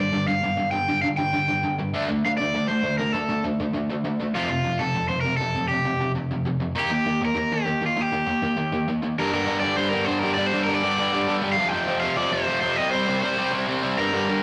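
A double-tracked distorted electric guitar drives an angry, raw punk riff at 199 BPM in G minor, moving through G5, D5, F and Eb before shifting to Gm, F5 and C5 at 9.2 seconds, while a crunchy overdriven guitar plays the melody up front, the pair caught in a rough rehearsal-room recording with warm saturation and the wet reverb of a stone room in this short fragment of a longer piece.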